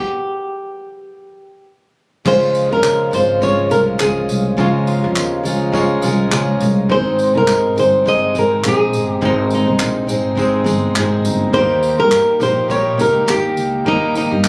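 A lightly swung 103 BPM groove in 4/4 carries this sunny, easy-going acoustic pop excerpt, where a fingerpicked flamenco guitar with fresh strings plays the melody alone until 2.2 seconds, when a full-bodied picked steel-string guitar with finger squeak and a brilliant upright piano in the background join, followed at 2.3 seconds by a reedy, breathing pedal harmonium holding chords, a woody pizzicato upright bass, and an unplugged drum kit with dark cymbals, a punchy kick, handclaps and bundle sticks, with a jingly tambourine entering at 2.6 seconds, all heard as if caught on a phone in a club with light reverb.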